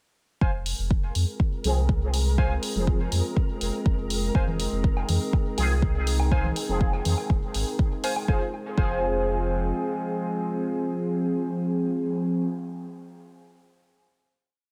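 A deep, up-front electronic kick, a round sine sub bass and warbling lo-fi synth keys open this meditative, hazy dub techno piece in F minor at 0.4 seconds. The kick holds a four-on-the-floor pulse at 122 BPM while dark, programmed hats and a backbeat sit behind it, and the mellow sub bass traces a dub-style line with sidechain pumping. The keys play a nostalgic riff of sparse chord stabs, one shape moved in parallel, soaked in chorus and dub echo. A dark, vintage tape-like pad with a slow attack holds sustained chords carrying 12-bit sampler grit and built-in reverb, and a juicy, detuned sawtooth polysynth adds bright, echoing stabs through chorus, phaser and cassette saturation while a filter sweeps across it. In the background, a flickering granular texture holds a single high note, and from 4.5 seconds overdriven congas and a woodblock, re-recorded in a small room, add echoing low percussion. 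After the groove ends at 8.3 seconds, a final chord rings out to the close under light digital ambience.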